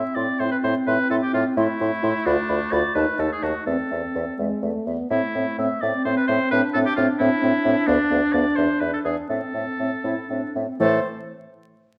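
Clear oboe, mellow clarinet, smooth-topped French horn and an up-front bassoon bass open this restless, stormy classical-period movement for wind quintet in A minor, moving in a rubato 6/8 at about 79-89 BPM (dotted quarters), with the airy, vibrato-touched concert flute carrying the melody from the background from 0.2 s. The oboe's second line sits forward with a light vibrato, while the clarinet sounds distant and roomy, and the harmony turns through diminished chords and a dominant E before settling back on A minor. A recital hall reverb, a dark, warm production and a vinyl crackle colour this fragment of a longer piece, which shifts into a new section at 10.8 s.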